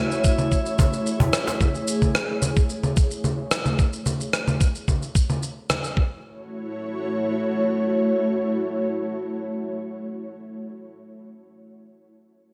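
An ethereal, airy pad sits up front, holding sustained chords that open on F#m7 through the whole fragment as it pumps and trembles under chorus and a filter sweep that runs to 3.8 seconds, while a faint, glassy harmonics texture drifts in the background at the very start. Beneath it, a gritty, thumpy electronic kick and a sampler-style shaker, congas and rim click with gated reverb drive this meditative, hypnotic organic downtempo cut until about 6.1 seconds, and a snappy, saturated cajon appears briefly from 0.8 seconds. The bright, 1980s-style digital production is bathed in a lush hall reverb, and the pad carries on by itself into the final stretch.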